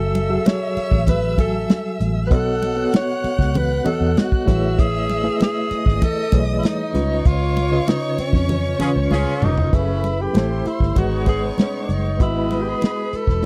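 Bittersweet and cinematic, this lush 1970s-style soul cut at 97 BPM in F# dorian sets a subtoned, vibrato-laden tenor saxophone melody over a bowed violin section with expressive portamento, a gritty overdriven electric piano with fast tremolo, a round foam-muted fingered bass, background congas and an up-front, dark-toned drum kit with a tight kick, while a clear, loose horn section adds stabs from 8.8 s during a band accent and a drum fill that lead into a new section at 9.7 s, all captured in a close, dry studio sound.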